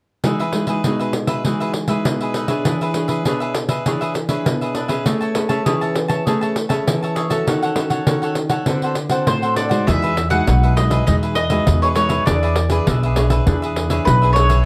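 A moderate studio reverb gives this short cut from a longer samba and choro piece a natural, roomy sound, with the pandeiro and upright bass sitting up front. The feel is joyful and lively at 100 BPM in a straight 4/4, in E major, with chords moving from Emaj9 and E6 through Amaj9, D#m7b5 and D6 before returning to Emaj9. From the start, a bright, crisp picked cavaquinho and a fingerpicked nylon-string guitar, with audible finger squeak and a classical tone, carry the accompaniment, while a jingly pandeiro played with soft hands keeps the percussion going. At 9.3 seconds a picked mandolin enters with the melody, its double strings giving a woody, warm voice. The pizzicato upright bass joins at 9.9 seconds as the second section begins, adding a warm, steel-strung low end beneath the ensemble until the cut ends.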